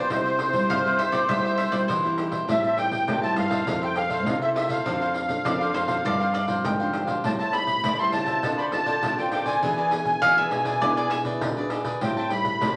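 A straight 4/4 samba-and-choro groove, cut from a longer piece, sets a playful, festive mood: a jingly pandeiro played with soft hands keeps time, a reedy, shimmering musette accordion with a vintage, band-limited tone sits up front carrying the melody, a bowl-back mandolin joins at 0.7 s with a bright, double-stringed second line, a crisp picked cavaquinho and a fingerpicked classical nylon-string guitar with audible finger squeak fill in the harmony, and a second nylon-string guitar thumb-plucks a warm bass line in the background, all heard through vinyl crackle and wet studio reverb.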